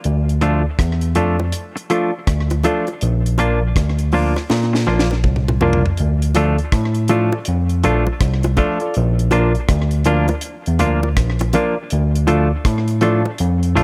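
Roots reggae in D minor at 81 BPM with a swung, hypnotic and meditative feel, built on a dry drum kit with a high-tuned snare, tight kick and slapback echo that rolls through a fill from 4.5 to 6.0 seconds, a bright bell-like tine electric piano carrying the bass line up front, a compressed semi-hollow electric guitar with tape echo, nasal percussive organ stabs thickened by chorus, and round, low-tuned bongos entering at 1.4 seconds in the background, all cycling between D minor and B-flat in this excerpt.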